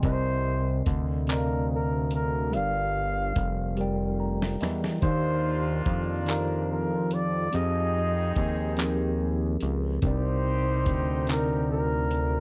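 In a slow, straight 6/8 at 48 beats per minute, counted in dotted quarters, a dusty, sampler-style soul drum kit sets a tender, intimate R&B groove with a thumpy kick, a medium-tuned snare, hi-hat and handclaps, its compressed, gritty sound placed up front. Beneath it, a fat analog bass with a sawtooth, detuned and wave-folded character and a filter sweep holds the low end between F1 and F2, sustained and close. A mellow tine electric piano, clean and heard through its built-in speakers, carries the chords Cm9, Gm7, Ebmaj9 and Fm9, and it joins the drums in a fill from 3.8 to 5.0 seconds. Over this, a breathy flugelhorn sings the jazz-style solo melody with light vibrato and scooped notes, a vintage voice placed at the front of the mix. From 5.0 seconds a tight horn section adds warm stabs beneath the lead, all within a dry, close 1970s-style studio sound in this short passage cut from a longer piece.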